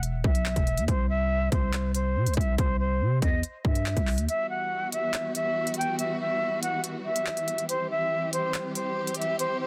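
A growling, buzzy 808-style bass and a drill drum kit open this menacing, ominous drill cut from a longer hip hop piece, moving at 141 BPM in 4/4 with a half-time feel. The electronic kit sits up front, pairing a hard-clipped kick with crisp hi-hats and handclaps under a tape-warm sheen, while the sine-based bass strikes with a fast attack and decays. Almost immediately a jazz flute takes the melody, airy and metallic with a soft attack and expressive vibrato, shaded by a low-pass filter and delay. At 4.3 seconds the bass drops out and a lush bowed string section enters with sustained chords, its ensemble sound smooth on top and carrying vibrato and portamento, as the harmony moves from Emadd9 to C. The drums stop at 9.5 seconds, leaving flute and strings to close, all of it captured in a dry sound with a dense, heavily limited modern master.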